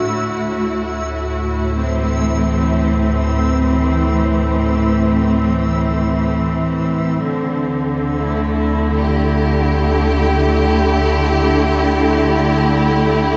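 Warm and peaceful, this ambient passage in free time is cut from a longer piece and unfolds over sustained chords from a bright, biting symphonic string section, lush with vibrato and placed up front with shimmer reverb. A deep, round sine sub bass holds a low D beneath it from 0.1 seconds, while a reversed, swelling granular texture drifts dreamily in the background with its own shimmer until 7.2 seconds, when the harmony moves from Am/D to D7sus4. The whole is bathed in a huge, wet ambient reverb with a dark, softened top end.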